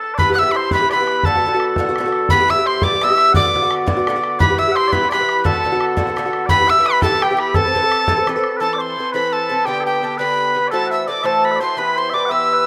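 Mellow, sweet small bagpipes sound first, and a breathy, bright tin whistle quickly takes the melody up front with crisp, chiffy attacks and vibrato in a wild, spirited Celtic jig at 114 BPM in 6/8. A very quiet, round mandolin and a metallic Irish bouzouki fill in beneath them over Em and Bm7 chords, while an open, boomy bodhran drives the rhythm until 8.5 seconds. The rough home demo mix sits in a wet plate reverb, and the harmony shifts to Amadd9 just before the cut moves into a new section at 8.6 seconds, passing through G and F#m7b5 before settling back on Em.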